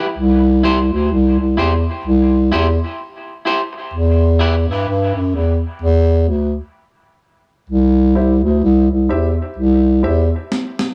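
A swung sixteenth-note dub reggae groove in 4/4 opens on a break, where a twangy, slightly broken-up electric guitar with tremolo and dub echo sounds briefly over an up-front bass clarinet with a mellow, soft attack, which carries the bass through C and E minor; a dark, woody, slightly detuned upright piano adds echoing stabs at 8.2 seconds, and a gritty, compressed electronic snare fill lands at 10.5 seconds, in a meditative, spacious, echo-heavy mix cut from a longer piece.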